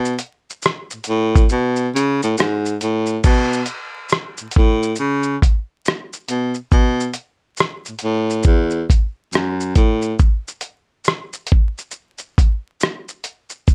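A clear baritone saxophone opens this nostalgic, hazy lo-fi hip hop fragment, carrying the low bass line in a jazz style with gentle vibrato and a soft attack, sitting up front and present in the mix. A lo-fi, sampler-style drum kit joins almost at once, its compressed, muffled sound built from a thumpy kick, hi-hat, rim click, shaker and crash cymbal, also placed up front. The groove is in four with a relaxed swing on the sixteenth notes, and the whole piece is tuned slightly sharp of standard pitch. The saxophone stops at 10.1 seconds, leaving the drums to play alone through a break that runs until the fragment is cut off at 13.7 seconds. Vinyl crackle adds a worn, dusty texture, while the dry sound, with little reverb, keeps the parts close and intimate.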